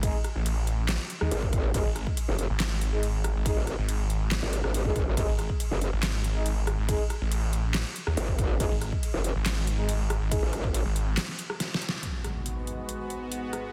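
A dense, heavily limited mix with light digital ambience carries this menacing, chaotic half-time wobble dubstep drop, cut from a longer piece. A snarling distorted saw bass and a chorused, wobbling growl bass that joins at 1.3 s sit up front over a punchy electronic kick and an overdriven kit of deep snare, metallic hi-hats, handclaps, rim clicks and crash cymbal, while a mellow brass ensemble punctuates with stabs trailing dub echo. After a brief break and drum fill, an electronic impact lands at 12.0 s alongside a lush supersaw pad holding a G#m7 chord, treated with phaser and sidechain pumping.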